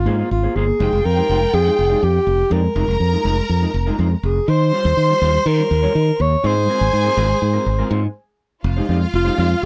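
A warm alto saxophone carries the melody up front in this sultry, glamorous disco excerpt in F minor at 122 BPM, its subtone sound marked by vibrato and scooped notes in a jazz-inflected solo style. Beneath it, a bright, growly fingered electric bass sits punchy and direct in the mix, running the full length of the passage. A mellow, dark electric guitar plays clean accompaniment further back, while a lush, bowed violin section enters at 0.8 seconds with a rich, expressive second line that sounds distant and wrapped in vibrato. The harmony moves through lush extended chords, from Ab6/9 to Fm9, Bb7sus4 over F, Eb13 and back to Ab6/9, before a stop from 8.2 seconds gives way to a new section returning to Fm9 at 8.6 seconds. The sound is dry and close, with little reverb, in the manner of a 1970s studio recording.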